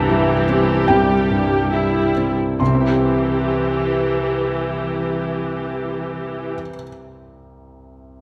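Cinematic, emotional film score, tender and moving, drifting in a rubato 4/4 that slows over its opening seconds in this short fragment of a longer piece. A felt-muted upright piano, mellow and intimate with audible action noise, sits up front beside a lush, bowed viola section with smooth vibrato, while a bright concert harp rings out fingerpicked arpeggios. The viola section stops at 6.5 seconds and the harp at 6.8, leaving the piano alone until 8.2 seconds, all within the wet reverb of a scoring stage.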